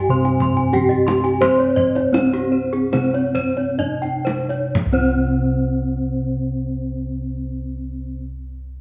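Set in a moderate recital-hall reverb, this brilliant, shimmering Balinese gamelan excerpt eases into a slowdown over its first 4.7 seconds, with a wooden-mallet bronze metallophone carrying the up-front melody while a softer, mellow metallophone struck with padded disc mallets plays the lower accompaniment. Two more bronze metallophones ring out arpeggios above, one bright under a horn mallet and the other close-miked, dry and full, with their paired tuning producing shimmering beats. Round, mellow bossed gongs with a vintage, band-limited tone supply the bass, and a tight kendang played with hard hands drives the rhythm from 0.2 until it drops out at 5.2 seconds.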